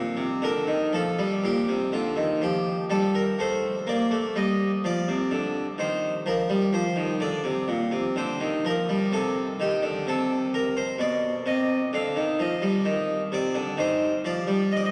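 Bathed in a long cathedral reverb and vinyl crackle, this grave, introspective fragment of a baroque-style classical suite movement in Bb major features a solo Flemish-style harpsichord, plucked and full-bodied on two sets of strings and placed up front, unfolding in a free rubato around 63 BPM in 4/4 before moving through a brief opening passage into a longer second section that passes through G7/B and arrives on C minor as the piece is cut off.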